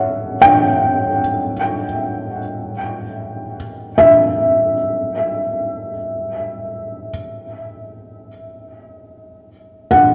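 Ambient in free time and A mixolydian, this peaceful, luminous fragment of a longer piece features a felt-muted upright piano playing alone for its full 10.1 seconds, voicing a rootless A7 in the register between C#5 and G5. The piano sits up front, its dark, intimate tone shaded by thick felt and the audible clicks of the action, with a diffuse ambient delay trailing its notes. A scoring-stage reverb with a 2.0-second tail surrounds it, while worn cassette tape lends a warbling pitch drift to the whole recording.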